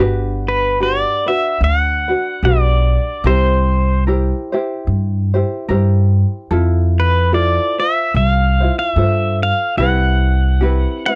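A light, fingerpicked acoustic ukulele and a woody, growly pizzicato upright bass with steel strings open this languid, relaxed Hawaiian piece at 73 BPM, swinging gently over Gmaj7, C7, Fmaj7 and Cmaj7. At 0.5 seconds an electric pedal steel guitar takes the melody up front, clean and compressed, played with fingerpicks, slide and volume swells, with the dark bass also sitting up front. The dry, close 1970s-style studio sound gives this short passage, cut from a longer piece, an intimate feel.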